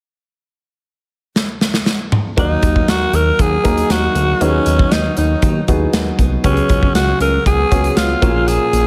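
1980s-style pop with a moody, nostalgic cast, cut from a longer piece in straight 4/4. The up-front studio drum kit, with its punchy kick and gated reverb, plays a fill at 1.4 seconds. At 2.4 seconds the rest of the band arrives: a raspy, gritty alto saxophone carries the melody up front with vibrato, scooped notes and tape echo, over a natural-sounding baby grand piano, a glossy chorused synth bass, and a clean, picked electric guitar riff tucked in the background with subtle chorus and tape echo, as the chords move from Ebm through Abm7/Eb and Db7sus4 to Bbm7 inside a small room ambience.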